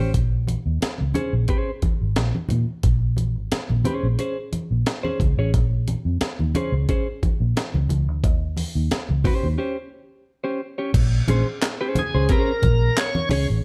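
A dark, lightly reverberant production frames this driving, cool funk excerpt, built on a gritty, compressed breakbeat drum kit with a thumpy kick, high-tuned snare, hi-hat, handclaps and crash cymbal, sitting up front beside a round, punchy, foam-muted fingered electric bass. A clean, picked electric guitar plays the accompaniment over Bbm9 and Eb6 chords, while low-tuned congas with a thick skin add an acoustic, small-room layer. After a break at 9.6 seconds, a bright, shouting tonewheel organ with light overdrive, slow rotary speaker and slapback echo takes the melody from 12.0 seconds.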